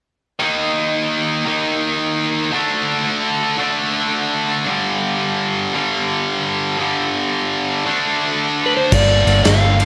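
Gritty and brooding, this short cut from a longer blues rock and southern rock piece in G minor opens on a bright, tight, double-tracked distorted guitar riff swinging at 113 BPM. At 8.7 seconds a dark slide guitar melody enters, and at 8.9 seconds a round, foam-muted, up-front bass, a punchy big rock drum kit in a stone room, and a thick overdriven tonewheel organ with chorus vibrato and slow rotary speaker in the background join it on a Gm9 chord, all in light small-room reverb.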